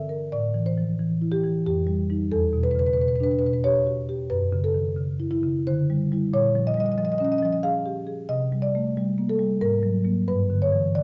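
This is a contemporary classical piece for solo marimba, a flowing, reflective excerpt cut from a longer work. It moves at 90 BPM in 3/4, but the rubato feel lets the pulse breathe and stretch. The marimba, played with soft mallets, sounds from 0.0 to 11.0 seconds across a range from E2 to E#5, its rosewood bars giving a woody, round, mellow tone placed up front. The harmony drifts through unexpected colours, from Am at the start through Em7, F#m7, D9sus4 and A#m7 before settling on G5 near the close. A moderate recital hall reverb of about 1.5 seconds surrounds the instrument, and the dark, warm production keeps the top end soft and veiled.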